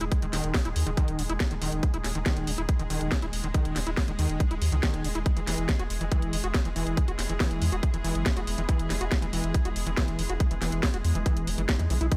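A driving straight 4/4 pulse at 140 BPM anchors this intense, psychedelic trance excerpt, where a tight, overdriven electronic kick sits up front with a cracking snare and bright hats, a deep, round analog bass holds the low end, a squelchy, screaming acid riff bites through with distortion, 12-bit grit and dub echo, an evolving wavetable pad morphs over sustained chords, a faint breathy pad adds air, and a very quiet swell appears at 11.5 seconds, all within a digital ambience.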